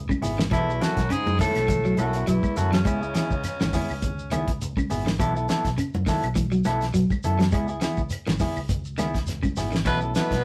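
A round, dark fingered electric bass opens this driving, joyful afrobeat excerpt at 103 BPM in B mixolydian. It is joined at once by a dry, up-front 70s drum kit with a fat snare and tight kick, background congas and woody claves, a grainy shekere, arpeggios on an electric guitar at the edge of break-up, and clean stabs from an up-front semi-hollow guitar. At 0.5 s a clear tenor saxophone with scooped notes takes the melody over a raspy, breathy baritone saxophone and a distant, roomy trombone; the horns stop at 4.4 s and return at 9.9 s, when a very quiet, barky tine electric piano also appears, all in a rough rehearsal-room sound with moderate studio reverb and a light 16th-note swing over a C#m7 to B7sus4 vamp.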